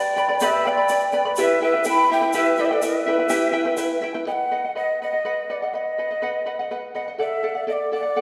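A breathy cane quena carries the melody up front over fingerpicked charango with shimmering double strings, while a mellow bamboo pan flute adds a second line until 4.0 seconds, in this wistful, earthy Andean folk excerpt at 82 BPM in 6/8. A grainy egg shaker sits low in the mix from 0.2 to 3.9 seconds, and the harmony moves from G and Em to B and then D. The music is heard from further back in a wet recital hall, and the quena's tongued chiff, vibrato and lifted highs give it a slightly unsteady, human edge.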